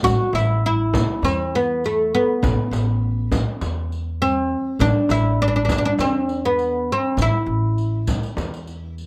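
Longing and hypnotic, this short passage from a longer Arabic maqam ensemble piece moves in a straight, steady four. The fretless oud carries the melody up front, its plectrum-plucked double strings sounding woody and warm as it stays within the range of A3 to F#4. Beneath it, the pizzicato upright bass holds the low end on steel strings, sitting a little further back. Two acoustic percussion parts sound distant, as if set in a large room: a big frame drum with a deep tone, and a riq with dark jingles placed lowest in the blend. Light reverb surrounds the ensemble, and all four parts play together across the roughly 9 seconds, tuned slightly below standard pitch to A4 = 438 Hz.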